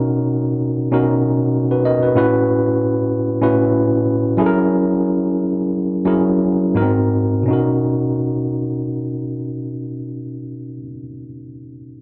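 A worn, slightly out-of-tune tine electric piano plays alone, lightly overdriven through its built-in speakers and sitting up front in a dry, close 1970s-style studio sound, in this smooth soul excerpt in B major at 82-96 BPM with a gentle sixteenth-note swing, moving from Bmaj7 through A6, F#7 and G#7 while slowing down from 2.2 to 7.5 seconds before returning to Bmaj7 for a brief second section.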